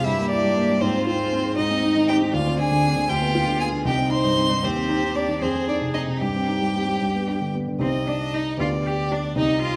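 Moderate recital hall reverb surrounds this spirited, cheerful excerpt from a quick classical-period movement for piano quartet in C minor at 78 BPM in 6/8: a close, smooth violin with vibrato carries the melody above a focused, distant second violin and a rich, expressive cello with portamento on supporting lines, while an up-front, intimate grand piano with audible action noise supplies the accompaniment.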